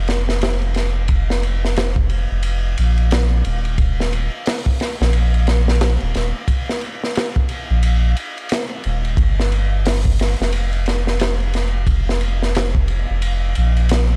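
A dark, close-sounding mix with very little reverb opens this hypnotic, cinematic trip hop fragment, cut from a longer piece and moving at 89 BPM in 4/4 with a 16th-note swing. A soft dub sub bass sits up front throughout, deep and round with a fast attack and sustained tone, holding low between Eb1 and Bb1. Beside it, a crunchy acoustic breakbeat kit of kick, snare, hi-hat and ride sounds saturated and gritty, with a tight kick, medium-tuned snare, dark cymbals and a rolled-off top.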